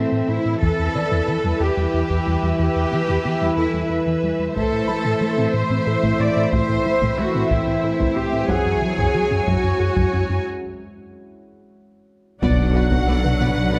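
Vast and relentless, this cinematic excerpt blends a symphonic orchestra with electronics at a slow 61 BPM in 6/8, set in a concert hall with moderate reverb. From the start, a rich, up-front cello section carries the bass alongside a smooth, dark gliding synth bass riff with portamento, while lush violins play a smooth second line and background violas fill in the accompaniment. An evolving analog drone with chorus holds sustained chords, a soft, round pluck traces arpeggios through chorus and tape echo, and a very quiet felt-muted upright piano adds intimate texture. Close, dry taiko drums struck with hard sticks enter at 0.6 seconds, and the harmony moves from Am and Em through an F#sus2 before a break and a drum fill lead into a new section at 12.4 seconds. There the music lands on Bm as an intense, distant violin melody on F#5 arrives with a roomy French horn section, a mellow tuba, a very quiet double bass section, a deep sub bass and a huge, dark impact.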